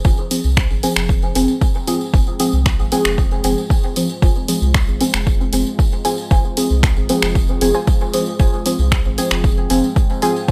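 Over a straight 4/4 pulse at 115 BPM, an overdriven electronic kick drum sits up front, joined from 0.3 seconds by a punchy analog drum machine whose finger snaps and hi-hat carry dub echo and the boxy character of a small room, while a jingly acoustic tambourine adds a faint shimmer. This is a meditative, hypnotic slice of dub techno in F minor, cut from a longer piece and resting on a single Fm chord throughout. A soft, round sub bass with sidechain pumping anchors the low end, and a deep, mellow chord stab, nasal yet full-bodied, fires up front through chorus, phaser and dub echo. A warbling, lo-fi pluck with a vintage, detuned tone plays a riff trailed by dub echo and a filter sweep, and from 1.9 seconds a moody, dark ambient pad with a slow attack and long release hangs in the background, breathing with sidechain pumping and its own built-in reverb. Light reverb lends the mix a gentle sense of space.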